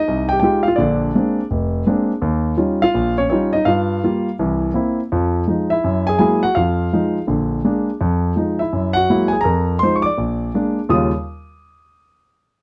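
Solo jazz at a brisk, swinging 166 BPM in 4/4, this short cut from a longer piece features a lone concert grand piano, up front with deep bass and short sustain, moving through sophisticated chords such as Fm7, Bb9 and Gb9 for 11.1 seconds in a dry, close 1970s-style studio sound.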